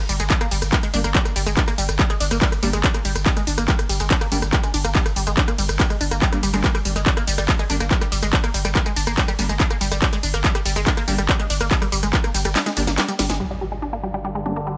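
Driving peak-time techno at 142 BPM in G phrygian, relentless and hypnotic, built on an overdriven, up-front kick and a layered drum kit with a cracking snare, smooth hats, handclaps, rim clicks, tambourine, ride and crash, under a deep, sine-based saturated sub bass and a squelchy, ring-modulated blip pluck riff treated with phaser, tube saturation and delay, while an aggressive, detuned rave stab with chorus and dub echo sits in the background. The kick drops out at 12.6 seconds for a drum fill, and a band accent at 13.3 seconds leads into a closing passage from 13.4 seconds where an electronic impact hits and filter sweeps move across the pluck and the stab. A slow-attack drone with moving overtones enters beneath them at 13.9 seconds, in this cut from a longer piece.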